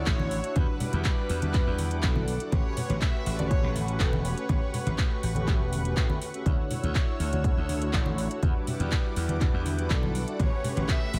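Sunny and groovy, this 122 BPM nu-disco excerpt in A mixolydian rides a punchy, up-front electronic kick, a tape-warmed house kit with metallic hats and handclaps, soft-handed congas in the background and a bright slap bass under mellow, detuned synth brass and a lush, warbling unison pad with sidechain pumping, while an intimate chamber violin section with delay plays the melody from 0.0 to 5.0 seconds and returns at 9.9 seconds over chords moving through Dmaj9, Em9 and A13 in a dry room.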